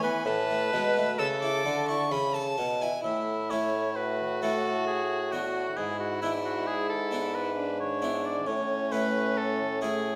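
This is a baroque-style classical sonata movement in A major, a short cut from a longer piece. It moves at a serene, flowing 66 BPM in 3/4, tuned slightly low at A4 = 438 Hz. A clear, up-front oboe carries the melody with light vibrato, while a single violin with a warm gut-string tone plays the second line. Beneath them, an airy, full-bodied harpsichord plucks the accompaniment and a present solo bassoon plays the bass. Everything sits in a reverberant recital hall, and after a brief opening phrase the second section, from 3.0 s, moves from A through Bm7/A and E7/G# before settling back on A at 8.5 s.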